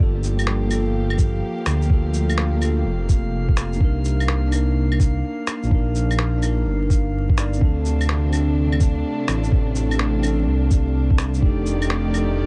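Future garage at 126 BPM in G minor with a rainy, wistful mood, this excerpt sets a bell-like tine electric piano with dub echo over sul tasto chamber strings carrying 12-bit sampler grit, both pumping along with a deep, rumbling detuned saw bass, while a glassy harmonics texture drifts in the background from 0.5 seconds, and a muffled, overdriven kit of shaker, claves and finger snaps starts at 0.2 seconds before a thumpy, up-front kick joins at 1.2 seconds, all through a swung groove over Gm7, Cm9, F6 and F13, with vinyl crackle throughout.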